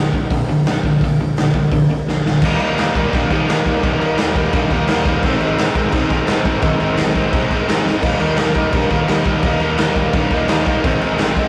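Punk rock, aggressive and raw, a short cut from a longer piece where a crunchy, double-tracked overdriven guitar riff sits up front over a growly fuzz bass tucked in the background and a punchy garage drum kit with dark cymbals, with drum fills at 2.1 and 7.9 seconds, all captured as a rough rehearsal-room recording with light reverb and warm saturation.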